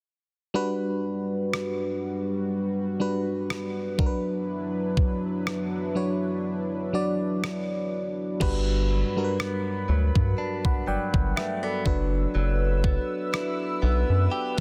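A mellow FM electric piano with a noise layer opens this romantic, smooth contemporary R&B passage, sitting up front over a shimmering, detuned pulse-width pad that blooms in slowly through chorus. A clean 12-bit drum machine joins at 1.5 s with a thumpy, sampler-style kick, rim clicks and crash cymbal, settling into an unhurried, lightly swung groove as the harmony rests on Gmaj7 and D69/F#. The kick drops away briefly before 8.4 s, when a round, deep analog bass arrives up front. At the same moment a direct-recorded clean electric guitar begins picking compressed arpeggios through phaser and tape echo. Light reverb surrounds the parts, and the master is dense and heavily limited.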